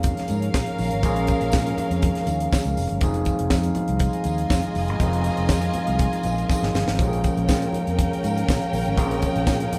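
A tight funk drum kit drives a straight disco groove, its high-tuned snare and tight kick sitting dry and up front, while a punchy, amped fingered bass anchors the low end in this glamorous, sultry excerpt cut from a longer piece. A gritty overdriven tine electric piano through a combo amp carries the accompaniment, a mellow French horn section holds smooth sustained chords, and a lush, clear violin section with vibrato adds a focused second line, all moving from Bbm7 to Fm7 and then Fm. Low-tuned congas played with soft hands and a jingly tambourine sit quietly in the background, a drum fill lands at 6.5 seconds, and a stone room reverb gives the band the feel of playing live together in one space.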